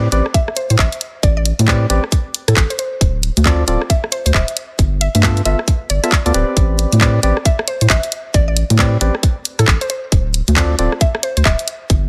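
A deep, saturated sub bass anchors this two-step UK garage passage, sitting up front with sidechain pumping beneath the tight electronic kick. The groove runs at 135 BPM in 4/4 with a 62% swing on the sixteenths, giving a bouncy, late-night feel in A minor. A layered garage kit of congas, handclaps, hi-hat and rim click shares the forefront with the kick, both carrying a small room ambience. Hollow, organ-like stabs with chorus and delay play until 10.9 seconds over a chord cycle of Am11, Dm7 and G13. A woody, mallet-like FM pluck adds a quieter melody with its own chorus and delay. The mix is dry and close, and the passage is cut from a longer piece.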